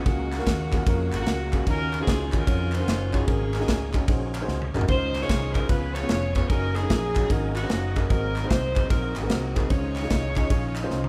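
Up-front acoustic drums with bright cymbals, a tight kick and fills at 4.5 and 10.9 seconds drive this jubilant, uplifting uptempo gospel excerpt at 149 BPM, swung and in Db major, as a clear jazz-style saxophone section carries the melody over a dark, mellow grand piano, a punchy fingered electric bass, a very quiet, full, lightly overdriven tonewheel organ holding chords through a fast rotary speaker, and crisp handclaps in the background, all set in a moderate church-like hall reverb.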